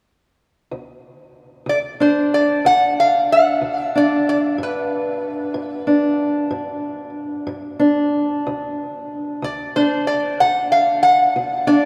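Acoustic country blues with a gritty, rollicking mood, moving at 62 BPM in a straight 12/8 feel and tuned a touch flat of standard pitch, in this short cut from a longer piece. A fingerpicked steel-string parlour guitar with a boxy tone lays down the low accompaniment from 0.7 seconds, and a metal-body resonator slide guitar, bright, nasal and played with fingerpicks, carries the melody up front from 1.7 seconds. Both guitars sit forward, bathed in a long cathedral reverb, while the harmony moves from a chordless opening passage to G at 4.6 seconds and back again.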